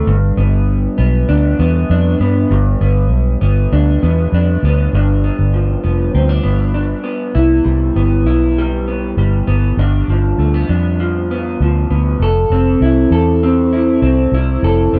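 Dreamy, sunny indie and bedroom pop cut from a longer piece, moving at 99 BPM in a straight 4/4, with a picked, slightly broken-up, lo-fi electric guitar through a small old amp, drenched in lush chorus and warbly pitch drift, sitting up front beside a dark, round, foam-muted vintage fingered electric bass, all in light reverb as the harmony drifts from G to G7 at 4.9 s and then through Cmaj7, G7 and Fmaj7 from 7.4 s.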